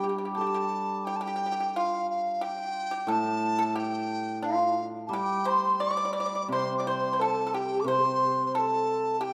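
A buzzing, airy dizi carries the festive, graceful melody high above a percussive pipa line, a shimmering hammered dulcimer accompaniment and a low xiao with vibrato that drops out at 0.7 seconds and returns at 6.5 seconds, all moving in a rubato 2/4 at 89 BPM in G shang mode within a lingering recital-hall reverb, in this short section of a Chinese traditional chamber piece.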